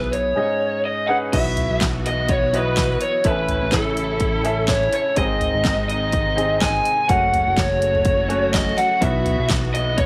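A moderate plate reverb lends this short cut from a longer piece a roomy sheen, with an overdriven electric lead guitar sitting up front through a small cranked amp, its lo-fi, picked tone trailed by slapback echo. This is earnest, dramatic piano-driven pop in 4/4 with a light swing on the sixteenths. A clear upright piano supplies woody, present, polished accompaniment with long sustain, while a fat analog bass adds a thick, detuned low end with a quick filter pluck. A punchy, layered electronic pop kit drives things with a fat snare, bright hats, handclaps, toms and crash cymbal. At 1.3 seconds a distant studio string section enters in the background with lush, bowed sustained chords full of vibrato and portamento, as the harmony moves from Bsus4 through A, G# and F#m before returning to Bsus4.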